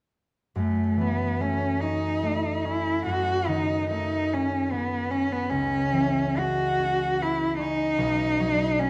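Wistful and hazy, this brief passage from a longer impressionist classical duo unfolds in a loose, rubato three-four, with cello and concert harp both entering at 0.6 seconds and playing together until 8.9 seconds. The rich, expressive cello carries the melody up front with a single bowed voice, soft attacks, vibrato and portamento. The acoustic harp accompanies with fingerpicked, ringing chords moving from F#m7 through B9/F# and C#m7 to Badd9, all bathed in the lingering reverb of a recital hall.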